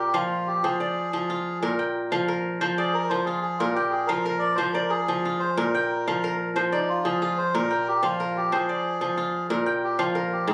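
A bright, ringing kora and a reedy, breathy melodica begin together, setting a reflective, flowing mood in this short excerpt of West African string music. The kora sits up front, playing crisp, fingerpicked arpeggios across a span from Ab2 to G5, while the melodica carries the melody between Eb4 and D5. The melodica has a nasal, mellow, vintage character with a band-limited, wooden-case tone, and it is colored by slapback echo and plate reverb. At 122 BPM in a straight 12/8 counted in dotted quarters, the harmony cycles through Bb5, Fm and F5 in a steady loop, with the tuning set to A4 = 441 Hz. Both parts play throughout the 10.5 seconds. Captured on a phone in a moderately reverberant room, the sound carries a club ambience around the instruments.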